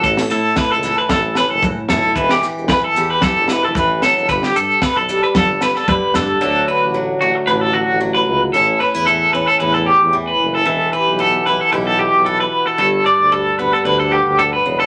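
Highlife guitar band music in D major at 113 BPM, with a swung sixteenth-note feel and a warm, carefree mood, cut from a longer piece. An up-front electric guitar at the edge of break-up carries the arpeggios, its twangy, bright, compressed tone shimmering with tremolo, while a boxy picked acoustic guitar plays swing-style accompaniment. Underneath, a distant, roomy tuba holds the bass with light vibrato, soft attacks and scooped notes in a jazz style. A tight funk kit with a high-tuned snare, ringing congas and grainy maracas set back in the background drive the groove until 6.3 s, after which the guitars and tuba carry on alone. The chords cycle through A, Em and G, landing on D at 6.4 s as the second section begins, all set in a wet studio reverb.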